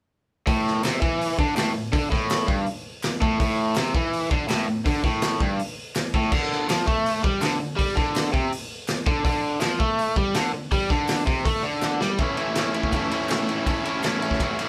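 An up-front, bright, double-tracked overdriven electric guitar drives a rowdy, raw garage rock riff in A major at 164 BPM alongside a gritty, punchy raw garage drum kit in a small pumping room, soon joined by very quiet crisp group handclaps, moving from A5 to D5 before a drum fill at 11.8 seconds leads into a new section on A at 12.2 seconds in this live-sounding cut from a longer piece.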